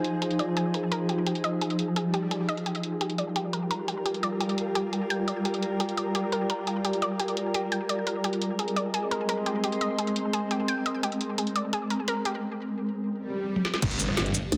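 Dense and heavily limited with a lush hall reverb, this tense, futuristic excerpt of dark technical drum and bass sets a swarming, ring-modulated drone and a warbling, lo-fi tape-like pad beneath a bright, wave-folded analog pluck arpeggio under a filter sweep, over a low-pass-filtered drum kit with woody snare and metallic hats, while electronic swells and an impact at 13.8 seconds bring in an overdriven kick and a snarling distorted saw bass, followed by a nasal vowel-sweep wobble bass at 14.5 seconds.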